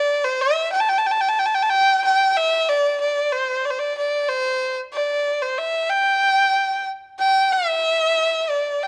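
A solo erhu, earthy and biting with a smooth top, sings a pastoral, graceful Chinese traditional melody in G zhi mode, played rubato around 93 BPM in 4/4 with light vibrato and portamento, sitting up front on close, detailed microphones with light reverb through this 8.9-second excerpt cut from a longer piece.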